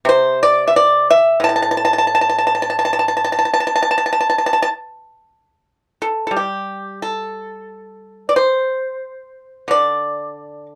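A dry, close 1970s-style studio recording with light reverb carries this longing, elegant short cut of traditional Chinese solo plucked-string music in the A yu mode, where an up-front acoustic pipa played with fingerpicks rings out percussive and warm across its range from A2 to A5 in a rubato 4/4 feel drifting between 79 and 92 BPM, moving into a new passage at 5.6 seconds before the excerpt ends at 10.8 seconds.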